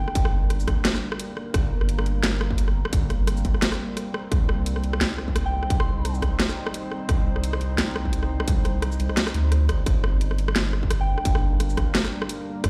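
Half-time drum and bass with a spacious, heavy mood, built on a saturated, thick sine sub bass and a distorted electronic kick under an overdriven kit of cracking snare, bright hats, rim click and shaker, while a deep, moody detuned sawtooth pad with 12-bit sampler grit and sidechain pumping holds sustained chords and a soft, pure FM bell with dub echo appears only briefly at the very start and around 5.5 and 11.0 seconds, all set in a large, bare-room reverb.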